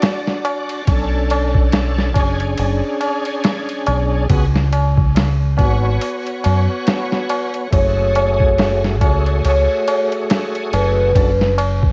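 Trip hop with a dark, cinematic mood, this short excerpt cut from a longer piece moves at an unhurried, swung pace under light reverb, digital ambience and the vinyl crackle of a home cassette recording. A pitched-down, sampler-style drum kit sits up front with a thumpy kick, medium-tuned snare and ride cymbal, its gritty, compressed sound re-recorded in a small room and put through cassette tape, while a low-tuned, ringing tabla plays close and dry beside it. From 0.9 seconds a deep dub fingered electric bass enters, round and dark, placed up front as the loudest part. A bright tonewheel organ supplies the accompaniment in a full, shouting voice, lightly overdriven with chorus vibrato, a slow rotary speaker, harmonic tremolo, a low-pass filter, cassette tape and tape echo. At 7.7 seconds a vibraphone with medium mallets takes the melody, its metallic ring carrying a slow motor vibrato and tape echo, as the harmony passes through Bm7, C#7sus4 and F#madd9 before settling on D/F#.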